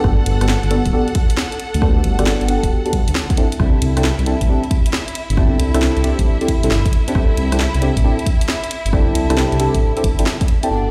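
A sunny, bouncy two-step garage excerpt opens with every part at once: a punchy electronic kick, a garage kit of hi-hat, rim click and cracking snare, a dark detuned saw bass, a deep mellow chord stab and a rich symphonic violin section. The groove swings its sixteenths hard, and the up-front kick and the layered kit both sit in a studio reverb. The bass is deep and rumbling, its unison saw voices beating against each other. Above it, the soft, decaying stabs carry chorus, phaser, delay and a grainy 12-bit sampler character, with a filter sweep and moving notch shaping them as the harmony shifts from Gmaj9 to C69 at 3.4 seconds. The lush bowed violins hold sustained chords with focused vibrato, pumping against the sidechain behind the rhythm section. The whole mix rings through a bare stone room as if on a big sound system, with the kick dropping out at 10.5 seconds, just before the kit at 10.7 seconds and the remaining parts at 10.9 seconds.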